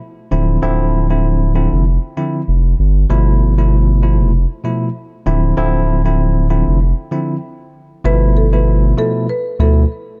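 Mellow and sultry, this afrobeats fragment, cut from a longer piece, sits on a gentle sixteenth-note swing in 4/4. A bell-like tine electric piano, bright, clean and up front, carries the chords, moving between Dm9 and G13. Underneath, a saturated sub bass with a deep, thick sine tone and fast attack holds sustained notes close to the listener. The groove halts briefly at 7.4 seconds, and just after the second section begins at 8.0 seconds, a woody marimba played with medium mallets adds a short, close-miked melody in a narrow range between A4 and B4. A small room reverb frames the dark, warm production.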